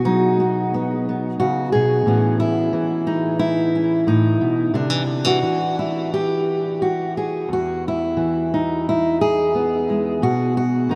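The recording opens with a fingerpicked steel-string acoustic guitar playing alone, a gentle, pastoral folk piece at 89 BPM in straight 4/4 and E major. The guitar is dark and up front, with the full body of an auditorium-sized instrument, ranging from E2 up to G#4. It sits in a vast, echoing space, bathed in a huge, wet reverb with a long decay that lets each note hang in the air. The harmony moves from B to Aadd9, then to Cadd9, settling on E before reaching a B5 at 10.2 seconds. This 11-second fragment is cut from a longer piece and carries a gentle, pastoral feeling throughout.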